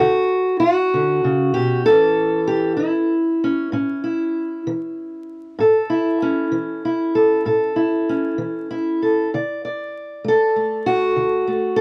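A fingerpicked steel-string parlour guitar opens on a D chord, setting a soulful, swaggering mood in this short acoustic country blues fragment. The tempo sits at 65 BPM in 12/8 with a straight feel, in A major. The guitar plays solo throughout, moving to A at 1.9 seconds and back to D at 9.3 seconds before the cut at 11.8 seconds, spanning from A2 up to D5. Its tone is dark, woody and boxy, with the character of old strings, and it sits up front in a dry, close 1970s-style studio sound with a touch of light reverb. Vinyl crackle adds a worn, vintage surface to the recording.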